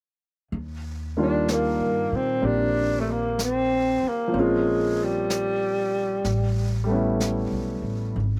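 The recording sounds dry, captured outdoors with little reverb and an absence of room sound. This short, gently swung jazz ballad excerpt carries an intimate, late-night mood. An upright bass with a woody, dark pizzicato tone sits up front, while a jazz brush kit of brushed snare, snare and hi-hat plays quietly beneath it; both begin at 0.5 seconds. At 1.2 seconds a breathy tenor saxophone takes the solo melody with a whispered subtone, soft attack, vibrato and scooped notes, and a warm grand piano with a smooth, vintage character accompanies it. Across the excerpt the harmony moves from Ebmaj9 through Bbm to A9. The saxophone stops at 6.9 seconds, leaving piano, bass and drums to carry the closing A9.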